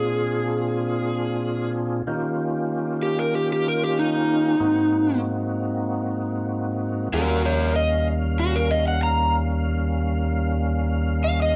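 A straight 4/4 pulse carries this soulful, swaggering blues, a short cut lifted from a longer piece. A percussive tonewheel organ sits up front as accompaniment, its full, lightly overdriven tone colored by second-harmonic percussion, chorus vibrato and a slow rotary speaker. Alongside it, an electric slide guitar carries the melody with a dark, overdriven, fingered sound, and at 2.1 seconds it moves into a solo that runs to the end. The harmony moves through dominant seventh chords, settling on Eb7 at the start of the solo before shifting to Ab7 and back. The pair sounds like a band playing live in one room, with a moderate large-studio reverb giving the sound a natural sense of space.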